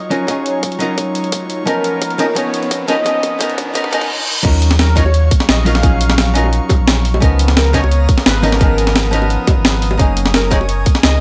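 Dreamy and rolling, this liquid drum and bass excerpt opens with a velvety, chorused synth lead melody over an airy, breathy pad, a dark hollow-body archtop guitar under a filter sweep, a gritty breakbeat kit with a high-tuned snare, a tight electronic kick and a very quiet riser and reverse cymbal building to the drop at 4.4 seconds, where a deep, round sub bass arrives and saturated, low-tuned bongos join at 5.1 seconds over Ebm9, Db13 and Gb69 chords in light reverb.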